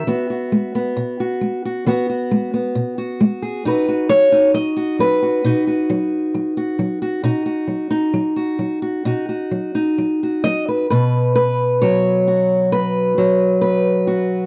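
A fingerpicked steel-string acoustic guitar sits up front and plays alone throughout this short folk fragment, cut from a longer piece, its tone warm and close in a dry 1970s-style studio sound touched by light reverb. The feel is hopeful and pastoral, moving freely in rubato across a range from B2 to E5, with the harmony passing from an Eadd9 opening to B at 3.6 seconds and settling on a B5 chord as a new section begins at 10.9 seconds.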